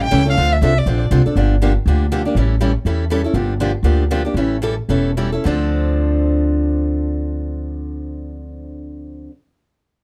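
A dark, lightly reverberant acoustic string swing excerpt in D minor, fiery yet bittersweet, races at 204-242 BPM as a warm, expressive bowed violin with vibrato and portamento sings a brief melody until 1.0 s over a bright, boxy picked steel-string guitar and a woody, thumpy pizzicato upright bass, moving through Dm7, Gm7 and A7 before slowing down from 3.3 s to 5.5 s.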